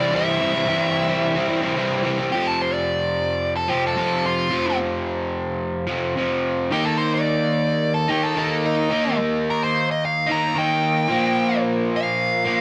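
A straight 4/4 rock groove at 109 BPM in F mixolydian drives this confident, swaggering excerpt, with a crunchy, double-tracked overdriven guitar picking a riff up front from start to finish. Alongside it, a dark, nasal lead guitar with a parked wah and overdrive plays the melody, breaking into a solo at 2.3 seconds that runs to the end at 12.6 seconds. The band sounds as if playing live in one room, wrapped in a short, wet studio reverb, while the harmony moves from C to F5, Eb5 and Bb5.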